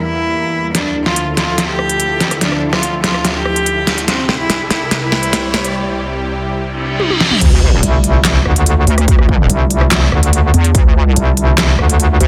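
Heavy wobble dubstep in a half-time feel, chaotic and menacing, opens with an intimate, sul tasto cello melody with delay over a lush, detuned supersaw pad that pumps under sidechain and a low-pass filter, while the tape-warm dubstep kit of deep snare, crisp hats, claps, rim clicks and toms builds with fills from 0.7 seconds. Background electronic risers and a reverse cymbal lead into the drop at 7.4 seconds, where an impact hits alongside a punchy layered kick and an up-front, overdriven square-wave wobble bass with chorus. A second, metallic FM wobble bass, saturated and aggressive, joins at 7.8 seconds, all within a dense, heavily limited modern mix with light reverb.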